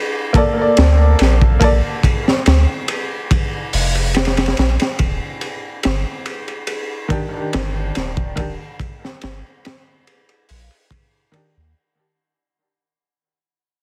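A crunchy, gritty breakbeat drum kit with a punchy kick, high-tuned snare and dark cymbals drives this smoky, brooding trip hop excerpt at 71 BPM, joined at 0.8 seconds by a deep, round dub sub bass that sits up front. A woody, slightly detuned upright piano with tremolo and tape echo plays accompaniment from 0.3 to 1.8 seconds and returns at 7.1 seconds, over chords moving from Bbmaj7 to Ebmaj7. The heavily compressed, radio-like sound carries light reverb and small room ambience, and a fade-out begins at 2.7 seconds.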